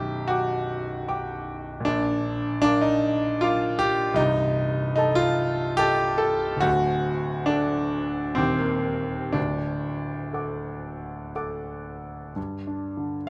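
Wistful and melancholic, this short passage from a romantic nocturne for solo piano moves in a gently flowing triple metre with a free, rubato feel. A single grand piano carries everything, its clear, intimate tone heard up front through close, detailed microphones that catch the audible noise of the action. The sound is present and ringing, with long sustain and a light reverb around it. The harmony drifts from G over B through B-flat, a diminished chord over C and D, touches an E-flat major seventh, and returns to D before settling on an open G sonority at 12.4 seconds. The range reaches from the deep bass up into the upper treble, and the piano is heard from 0.0 to 13.3 seconds, lending the fragment a tender, private quality.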